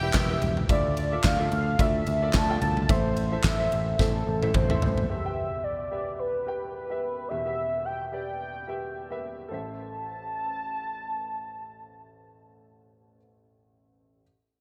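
Dramatic and bittersweet, this excerpt of piano-driven pop moves at 109 BPM in 4/4 with a light swing on the sixteenths, cut from a longer piece and dressed in bright 1980s-style digital production with a lush hall reverb. A velvety, detuned synth lead carries the melody up front from the start, its sawtooth and triangle tones smooth and sustained with a fast attack, vibrato and chorus, ranging from A4 to A5 until 12.5 seconds. Beneath it, a natural-sounding baby grand piano with analog chorus supplies the accompaniment across its span from A1 to G5, continuing alone after the lead stops until 14.2 seconds. A picked electric bass, direct and amped, and a huge arena drum kit with a fat snare, punchy kick, ride cymbal, toms, handclaps and gated reverb open the piece together, the drums closing their brief stretch with a fill that ends at 5.1 seconds. The harmony turns from Em through Dmadd9 and Am, returning to Em and then Am as the passage unfolds.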